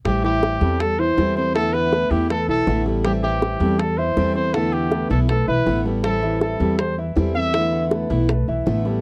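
Nostalgic and gently glowing, this short cut of Cuban son and guajira moves at 160 BPM in a straight 4/4, sitting in A minor and swaying between Am7 and E7sus4 every bar. A mellow trumpet carries the melody up front, its solo line punchy yet distant and roomy, with light vibrato and scooped notes in a pop style, playing from 0.1 to 7.9 seconds. Beneath it, a woody, thumpy pizzicato upright bass sits prominently in the mix, while tight, high-tuned bongos struck with soft hands keep the percussion close and dry. A concert grand piano adds arpeggios with deep bass, a slightly boxy tone and long sustain, and a picked steel-string acoustic guitar with fresh strings and audible finger squeak fills in the accompaniment. The whole production has the intimate, dry feel of a close 1970s-style studio session with little reverb.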